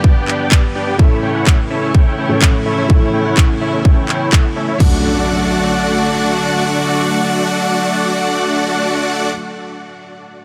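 Uplifting and euphoric, this festival progressive house excerpt in D major moves at 126 BPM, with a huge, bright, detuned supersaw lead riff sitting up front through a low-pass filter sweep, sidechain pumping and dub echo, over a soft, felt-muted upright piano with audible action noise and distant, floating sul tasto strings holding sustained chords. A punchy, tape-warm electronic kick pounds up front alongside a house kit of crash cymbal and handclaps, both stopping at 4.9 seconds. The chords move from G to A before landing on D at 4.8 seconds, where an electronic impact enters, all in a light digital reverb.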